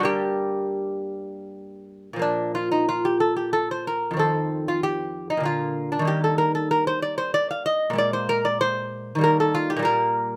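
A solo lute opens this short excerpt from a longer piece, a baroque-style classical dance in 3/4 set in B-flat major, with a grave, introspective mood. The tempo moves between 81 and 99 BPM with a rubato feel, so the dance pulse breathes freely rather than holding strictly steady. The lute is fingerpicked and delicate, its gut double strings and some octave-doubled courses giving a soft, warm glow, and it sits up front across a range from F2 to F5. The harmony begins on G minor, turns to B-flat around 5.5 seconds and E-flat near 6.1 seconds, and closes on G minor over B-flat at 9.9 seconds. A moderate studio reverb adds a gentle halo around the instrument, keeping the sound intimate and unhurried through the final moments at 10.4 seconds.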